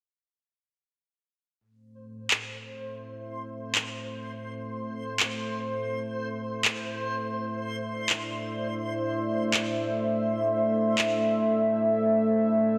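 Half-time drum and bass with a heavy, spacious mood, heard as a short section cut from a longer piece. A dark analog pad comes in at 1.6 seconds and holds sustained chords throughout, its deep, detuned sawtooth tone thickened by a sub octave, a slow attack, a long release and chorus, while a filter sweep moves across it. Layered electronic handclaps sit up front from 2.3 seconds, their produced sound carrying the character of the small room they were re-recorded in. A reversed, swelling texture enters at 2.5 seconds, lying quietly beneath the pad with a bright, granular shimmer, its own built-in reverb and a lush chorus. The whole mix is soaked in a lush hall reverb, giving it a dreamy depth.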